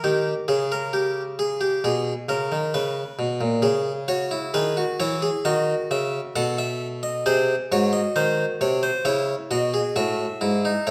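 Serious and solemn, this short excerpt from a longer baroque-style three-part fugue in C# minor is played on a solo Flemish-style harpsichord, its plucked, bright single set of strings heard up front in a reverberant recital hall, moving at a stately 67 BPM in straight 4/4 through a cadence that closes on C# minor at 9.1 seconds.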